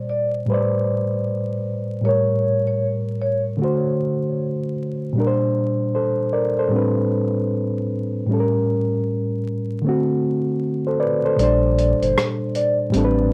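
A reedy, clean electric piano opens this nostalgic, melancholic lo-fi hip hop excerpt, sitting up front with cassette-tape coloring as it moves through chords such as Am11, A7b9, D7 and Bb69 in A dorian at 77 BPM, with a lazy swing on the 16ths. Almost at once, at 0.1 seconds, a soft-mallet vibraphone adds a short melody in a narrow high register, its metallic, ringing, airy tone shaded by a slow motor vibrato and trailed by analog delay. After the vibraphone drops away, the electric piano carries the progression alone until 11.4 seconds, when the vibraphone returns and the piece shifts into a new section. There, a deep, full sub bass with an octave layer arrives with a fast attack and sustained notes. A dusty, sampler-style drum kit joins as well, heard as hi-hat and rim click with compressed, gritty 12-bit character and cassette wear. The whole recording has the feel of a home cassette session, with vinyl crackle and moderate studio reverb, and it is cut from a longer piece.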